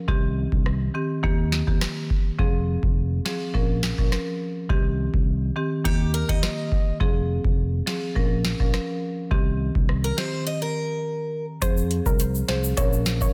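A booming analog drum machine with a deep kick, tonal snare and metallic hats drives this hypnotic, tough dancehall groove alongside punchy fingered electric bass and a woody, up-front marimba cycling through the chord progression, with a bright, boxy archtop guitar picking arpeggios from 5.9 seconds, a short break at 10.5 seconds, and then a soft, nasal pluck melody with chorus and digital delay arriving at 11.6 seconds over a close, dry egg shaker, all in a small room with a dense, heavily limited modern master.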